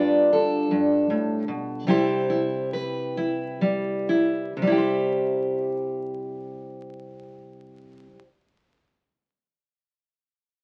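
A fingerpicked steel-string acoustic guitar carries this short folk fragment alone, sitting up front with the woody body of a dreadnought and the dull ring of old strings. The mood is warm and nostalgic, moving in a gentle 6/8 at roughly 40-53 BPM in C major, with the tempo slowing down through the first 4.6 seconds. The harmony rests on a G7 before settling onto C at 1.9 seconds, the playing spanning from G2 up to C5. A studio reverb lends the guitar a wet halo, while the sound of a very old 78 rpm record, crackle and all, wraps the performance in a faded, antique patina. Cut from a longer piece, the passage moves from its opening phrase into a second section at 4.6 seconds, and the guitar falls silent at 8.3 seconds.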